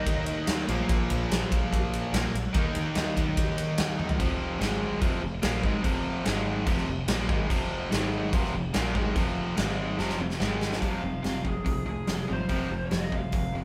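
A band playing live in one room comes through with light reverb, and the huge arena drum kit sits up front with a natural, big-room sound, a punchy kick and a medium-tuned snare working across crash, ride, hi-hat and toms. This heavy, aggressive hard rock clip in F minor drives at 145 BPM in a straight 4/4, cut from a longer piece. Three rhythm guitars carry the riff from start to finish: a tight, bright distorted guitar, a double-tracked crunchy guitar set back in the mix, and an overdriven semi-hollow guitar with a hollow-body warmth sitting in the background. Beneath them, a dark, round, foam-muted picked bass with overdrive anchors the low end, while power chords on Eb, Bb and F give way to F minor and Ab shapes. A lo-fi lead guitar through a small cranked amp flashes briefly at the opening, then returns at 10.8 seconds with a melody after a drum fill from 10.0 seconds ushers in the final part.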